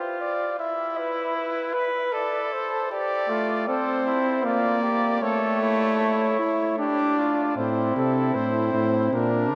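Contemplative yet driving, this brief cut from a longer classical brass canzona moves in an imitative style at 78 BPM in 3/4, set in D minor and heard in a vast, echoing cathedral space. A dark, softly attacked trumpet with vibrato carries the melody up front while a mellow, distant trumpet with light vibrato weaves the second line, and a bright trombone enters at 3.3 seconds with accompaniment. At 7.6 seconds a clear bass trombone adds its vibrato-tinged bass as the harmony turns to A minor.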